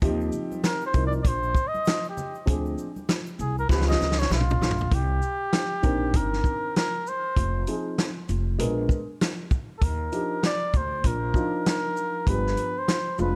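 A cup-muted trumpet, veiled and breathy with light vibrato and analog delay, carries the melody from 0.7 s in this nocturnal, mellow jazz-hop excerpt at 98 BPM in C minor, swung on the sixteenths. Beneath it, a dark, slightly detuned upright piano supplies smooth, vintage chords, while a growly pizzicato upright bass and a vintage drum kit with a fat snare and punchy kick sit up front in a small room. Bright congas and tube shaker play in the background until 4.9 s, where a drum fill leads from the opening passage into the next, which opens on Cm9.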